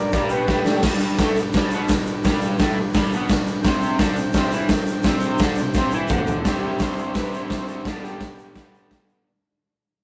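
A rowdy, raw garage rock piece, cut from a longer recording, opens with an overdriven combo organ melody over a picked, double-tracked guitar riff and a very quiet, clean organ holding sustained chords. An up-front acoustic drum kit with a punchy kick and a pumping stone-room sound enters with a fill, while a grainy egg shaker sits distant in the background. The reedy lead organ, with heavy vibrato, drops out at 0.8 seconds and returns at 6.5 seconds as the fade-out begins after a second drum fill, all in a rough rehearsal-room sound with saturated, gritty drums and bright, overdriven guitar.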